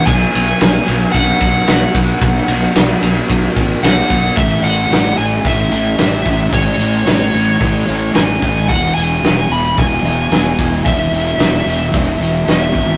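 A smooth overdriven lead guitar carries a high melody over a dark, double-tracked fuzz guitar riff from the very start of this hazy, wistful shoegaze and dream pop excerpt, joined at 0.1 seconds by a round, punchy fingered fuzz bass and a loose, gritty indie drum kit sitting up front with a rolled-off top, as the chords move from B5 to A at 4.4 seconds and E at 8.7 seconds within a rough rehearsal-room sound of tube saturation and stone-room reverb.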